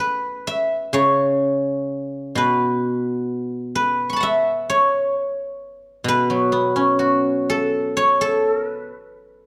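A solo guzheng opens this short cut from a longer Chinese traditional piece and carries it alone for its full 9.5 seconds. The mood is serene and flowing, with a slow pulse near 64 BPM in 4/4 that the player treats freely in rubato. Played with fingerpicks, the instrument has a bright, silvery tone whose notes ring on, and it sits up front in the sound while spanning from B2 to C#6. A moderate recital hall reverb lends the plucked strings an airy sense of space, and a faint mains hum lies beneath the music. The instrument is tuned slightly below standard pitch, with A4 at 439 Hz.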